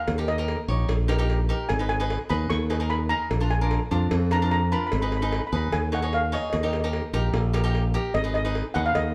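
A driving calypso groove in straight 4/4 at 149 BPM carries this dramatic fragment, cut from a longer piece, with a bright, up-front fingered electric bass anchoring the low end and a vintage, band-limited cowbell sitting in the background. Over a crisp, picked cavaquinho accompaniment, a shimmering lead steel pan struck with medium rubber sticks carries the melody, its metallic tone carrying a boxy small-room character. The band plays live in one large, wet studio space as the harmony moves through Eb, Abm and Bb over roughly 9 seconds.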